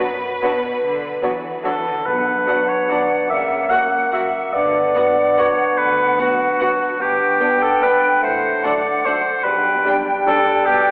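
A sweeping, bittersweet orchestral ballroom waltz in a rubato three with uneven beats, this excerpt opens with bowed string sections: a close, warm violin melody with vibrato over a smooth background second line, a rich but very quiet viola accompaniment and a lush cello bass, with a dark double bass entering at 0.8 seconds. An up-front oboe takes a second line at 1.6 seconds, and at 2.1 seconds a crisp, airy flute group, a distant, mellow clarinet, a bassoon accompaniment and a brief timpani stroke arrive, while a dark French horn section soon adds soft-edged sustained chords in the background. It is set in a wet concert hall and heard from further back, with a thin, telephone-like sound.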